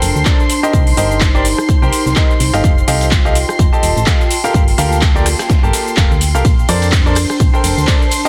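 Piano house with a joyful, feel-good lift, cut from a longer piece, riding a swung 4/4 groove over Cm7, F9 and Gm9 harmony. A brilliant grand piano riff with audible action noise and digital delay sits over a round, dark FM bass and veiled, con sordino violin chords, while a warbling, nostalgic tape-like pad with chorus adds lo-fi haze, and the piano, bass, strings and pad all pump against the sidechain. The punchy electronic kick enters at 0.3 seconds up front, joined by a house kit of metallic hats, handclaps, ride, rim click and shaker, a very quiet gritty sampler-style kit, and a faint tambourine from 6.4 seconds, all under a dense, heavily limited master.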